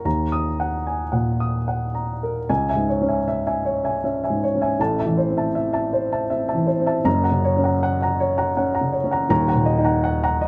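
A dark upright piano opens alone and carries this brief neoclassical minimalist passage, cut from a longer piece, by itself from 0.0 to 10.5 seconds. Its tone is mellow and woody, with a smooth, vintage character, and it sits up front in the sound. The playing moves in a rubato 3/4 at around 79 BPM, giving the music an intimate, reflective mood. The harmony drifts from D#m through C#m, Am and F# before settling back on D#m at 9.3 seconds, while the piano spans a range from D#1 to D#6. Light reverb and a dusky, warm production wrap the instrument in a close, intimate atmosphere.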